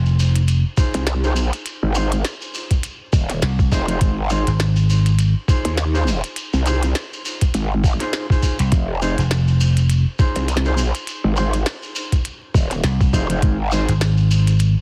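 Playful and swaggering, this glitch hop excerpt struts at 102 BPM in F minor pentatonic with a swung sixteenth feel, built over a loop of Fm7 and Ab6 chords. A punchy, amped vintage slap bass with tube saturation opens the excerpt, joined within the first second by a growling, wobbling growl bass with chorus and a gritty, thumpy pitched-down kick, all up front, while a glitchy kit adds a tiny snare and clicky hats and a grainy, distant shekere sits back in a large room. Dark, clean stabs from a mellow electric guitar pump with sidechain and trail tape echo, and the whole track has a dry, heavily compressed radio sound dusted with vinyl crackle.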